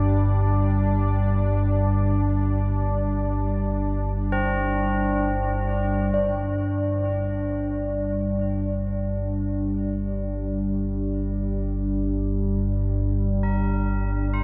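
A deep, ominous, warbling drone rumbles up front through this unsettling, cavernous dark ambient piece, joined from the start by a moody, detuned pad with chorus and ring modulation, while solemn tubular bells enter at 4.3 seconds with arpeggios in diffuse delay and fade in from 6.1 seconds, when a meditative bronze singing bowl adds a metallic, slowly beating tone, the whole sunk in huge reverb with a cassette-tape grain.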